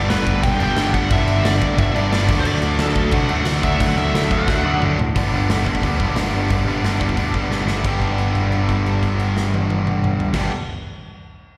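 A straight 4/4 pulse drives this rowdy, energetic punk rock cut at 178 BPM in G major, taken from a longer piece and moving from G to D and back to G. A big rock drum kit sits up front with a punchy kick, a medium-tuned snare and bright cymbals across crash, hi-hat and toms, dropping fills near 4.5 seconds and again just before the closing held note at 7.8 seconds. A fuzz-soaked picked bass, direct and amped, pushes the low end hard, while a distorted electric guitar up front and a second overdriven guitar farther back both play picked riffs with slapback echo. A biting lead guitar carries the melody only through the opening 4.8 seconds, its overdrive trailed by slapback and digital delay. The whole thing sounds like a live gig heard through a venue's PA, wrapped in small-room ambience and recital hall reverb.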